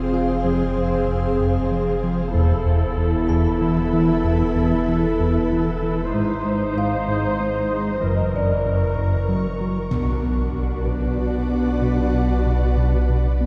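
A smooth, saturated synth bass riff runs through this mysterious, tense suspense film cue at 95 BPM in 3/4, with a deep, punchy sub bass drone beneath it. A lush, up-front viola section plays bowed sul tasto accompaniment with vibrato over a distant cello section, a very quiet double bass section that enters briefly at 2.3 s and returns from 6.1 s, an ethereal, airy pad with ensemble chorus, and a delicate, tinkling music box in the background. The harmony shifts through Fm, Esus4, G# and F#7 before settling into B minor at 9.9 s, where a background electronic impact sounds until 11.8 s, all set in a wet scoring-stage reverb heard from further back in the room in this excerpt of a longer piece.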